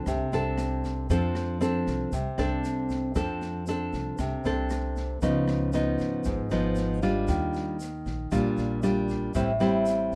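Sophisticated and relaxed, this short bossa nova fragment, cut from a longer piece, moves at 116 BPM in a straight 4/4 in F major. Up front, a fingerpicked nylon-string guitar with fresh strings carries the accompaniment in a full-bodied, deep classical tone with audible finger squeak, moving from F6 through Db9 and Ebmaj9 to Am7. Beneath it, a pizzicato upright bass with steel strings sounds woody and thumpy. In the background, an acoustic jazz drum kit in a small room plays kick drum, rim click and snare, dark and smooth with a high-tuned snare, boomy kick and rolled-off top. A close tube shaker sits in the background too, grainy and mellow. A new section begins at 3.2 seconds, and the recording has the rough character of a home demo mix.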